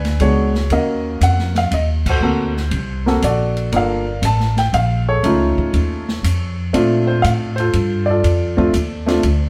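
Relaxed and warm, this short cut from a longer jazz piano trio piece swings gently in three, with an intimate concert grand carrying the melody up front, its deep bass and audible action noise close at hand, over a woody, pizzicato upright bass on steel strings. An acoustic drum kit with dark cymbals, a medium-tuned snare and a boomy kick plays crash, hi-hat, ride, snare and kick in a small, natural-sounding room, and the trio hits a band accent at 2.0 s. Moderate studio reverb sets the group further back in the room as the harmony moves through extended and altered chords, from a rootless E9 to a Bbmaj9.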